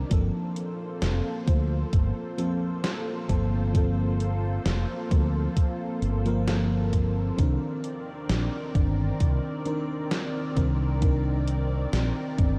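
A thumpy, tape-warm electronic kick anchors this hazy, woozy vaporwave excerpt at a slow 66 BPM in G minor. It sits beside a gated 80s drum machine whose hi-hat and snare ring out in a large, gated-reverb room. Up front, a round, dark fretless bass and a dreamy FM electric piano with subtle chorus and tape echo trace Gm11, then Cm9 at 7.4 seconds, while a thick, detuned unison pad drifts beneath them with phaser shimmer and gritty 12-bit sampler texture.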